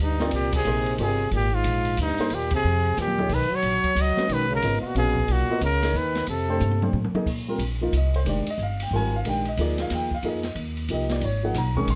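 A breathy, whispered trumpet sits up front with the melody, its soft attack, scooped notes and light vibrato giving this modal jazz excerpt a searching, open mood in a swung three-four. Beneath it a mellow trombone carries a smooth second line, and both horns fall away at 6.9 seconds. A dark baby grand piano, also placed up front, comps through the chords while a woody, thumpy pizzicato upright bass anchors the low end. The band hits accents early on, and an open acoustic drum kit with a boomy kick and ride cymbal adds drum fills around 3.0 and 6.6 seconds. After the horns drop out, piano, bass and drums carry the second section over suspended chords, all captured with close, detailed microphones and light reverb.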